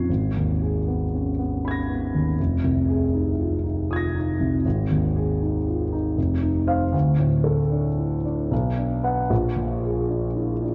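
A solo grand piano opens at once and carries this hazy, nocturnal impressionist excerpt alone from 0.0 to 10.7 seconds, moving in a rubato 3/4 at around 78 BPM with uneven beats. Its warm, present tone sits up front with long sustain, reaching from deep F1 to bright C7 as the harmony drifts from Abmadd9 and Fm7 through bare open fifths toward Bm and a closing Bb7#11. A moderate concert hall reverb and a dark, warm production give the short passage a shadowed glow.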